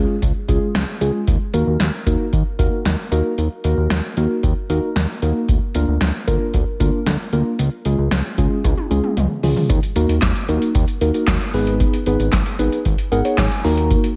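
Muted, felt-like synth keys and a fat analog bass open this melancholic, cool synth-pop excerpt in Eb minor, with an electro analog drum machine joining a moment later at a straight 114 BPM in 4/4. The keys are soft and intimate, a dark, decaying blend of triangle and sawtooth tones with a noise layer, ring modulation and chorus. Beneath them, the sawtooth bass is thick and sustained, sitting low and up front. The drums pair a deep kick and punchy snare with metallic hi-hats, handclaps and toms, their snare, clap and hats carrying a short room sound and a gated reverb that gives the kit a big, re-recorded presence. The harmony moves through Db, Ebm and Bb/D before a drum fill at 8.6 s leads into a new section at 9.7 s, where Ebm and Abm take over. A brief synth keys fill at 12.9 s rounds off this fragment of a longer piece, all set in a light overall reverb.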